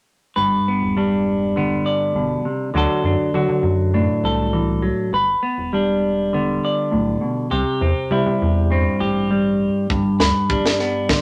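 A clean, dark semi-hollow electric guitar sits up front from 0.4 s, playing fingered accompaniment over a rubbery, bouncy square-wave bass with a filter pluck. Together they set a carefree highlife guitar-band groove in straight 4/4, cycling through G, D, G and C in a wet studio reverb. At 9.9 s a tight funk kit joins with a high-tuned snare and tight kick before this short excerpt, cut from a longer piece, breaks off.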